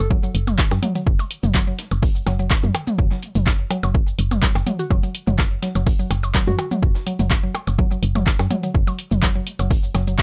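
A brief, gentle blip of a chorused, warbling FM synth lead and a dark, round FM bass with sidechain pumping open this cool, sparse, lightly swung minimal techno snippet, joined almost at once by a punchy, up-front electronic kick, a woody, mallet-like pluck riff with chorus and delay, an analog drum machine with handclaps, hi-hat and shaker, electronic toms and percussion blips trailing digital echoes, and a gritty, pitched-up sampler-style breakbeat kit of high-passed hi-hat, high-tuned snare and tambourine sitting in the background, with the lead returning briefly at 6.5 seconds in a dry, close mix.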